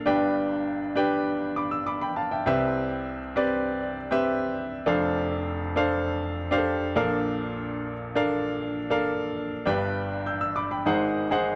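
A dark, warm production with light reverb frames a clear baby grand piano, which sits up front with a present, polished tone. This short pop piece at 100 BPM in 4/4 with a straight feel is in C major and carries a nostalgic yet uplifting mood. The piano plays solo for the whole 11.6 seconds, ranging from F1 up to G6. Its harmony moves from G through Cmaj7 and F6 to Bbmaj7, then returns to G at 9.7 seconds before an Ab7 arrives at 10.9 seconds. Cut from a longer piece, it ends on that unresolved chord, leaving the phrase open.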